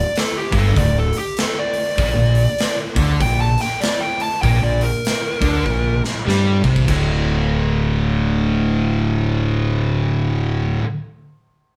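A fuzzed, distorted lead guitar sits up front from the opening, playing a solo melody with a warm tone until about 6.0 seconds. This stoner and doom metal passage moves at 98 BPM in 4/4 with a swung eighth-note feel, and its mood is hypnotic and ominous. Beneath it, two dark, picked fuzz guitars carry the low riff, one in the background, over a growly, overdriven fingered electric bass, all moving between D5 and Bb69 chords. A punchy, polished rock drum kit with a medium-tuned snare, crash, hi-hat and toms sits forward in an airy stone-room sound and breaks into a fill at 5.7 seconds. The band sounds like it is playing live together in one room with moderate reverb, and the riff section carries on to 10.8 seconds in this clip from a longer piece.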